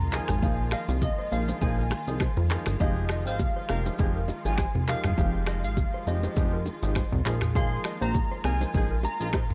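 A punchy, funky analog bass sits up front in this mellow, hypnotic afrobeats excerpt at 101 BPM in F minor. It shares the foreground with an electronic afro-pop kit of deep kick, smooth hats, snaps, handclaps, rim clicks, shaker and toms, with very quiet, ringing congas and bongos beside it. A glassy, detuned wavetable pluck carries the melody through chorus and analog delay, while in the background a lush, bowed string section pumps through sustained chords, a polished grand piano accompanies, and a dark, clean electric guitar plays a delayed riff. A distant, roomy horn section enters at 2.8 s with a second line as the harmony moves between Bb7sus4 and Fm9, and the recording has a dry, gritty small-room sound.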